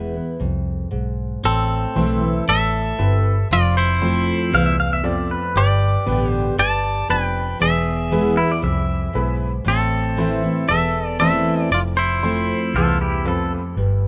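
A bright, twangy electric guitar carries the melody from 1.5 seconds in this dusty, brooding honky-tonk and classic country excerpt in A minor at 117 BPM, over a full-bodied picked acoustic guitar and a dark, round, foam-muted bass, with an intimate baby grand piano sitting lower in the mix with its action noise audible, and a pedal steel guitar adding slide and volume swells as a second line from 4.5 seconds, set in a light reverb.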